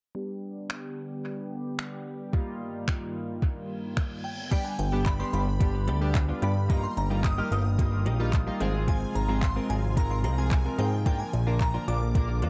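Summery and upbeat, this dance-pop excerpt moves at 110 BPM in a straight 4/4, cut from a longer piece and built on a light-reverb, echo-heavy mix. It opens with glossy, chorused retro synth keys carrying the accompaniment through a filter sweep, joined by a detuned, evolving sawtooth pad holding sustained chords in the background, both pumping against the sidechain. A smooth, electronic R&B kit comes in up front with a soft kick, metallic hats, finger snaps, handclaps and crash, while an electronic reverse cymbal leads into the second section at 4.5 seconds. Just before that, at 4.2 seconds, a shimmering, dreamy FM bell with a warbling, vintage halo takes the melody high above. Then a clean, direct-recorded electric guitar picks a compressed riff in the background, and a fat, saturated analog bass with a nasal sawtooth-and-square bite and a filter pluck anchors the low end up front. The harmony moves from G to Ebadd9/G and back, then through Fm/Ab to Bb, with dub echo trailing the keys, bell and guitar.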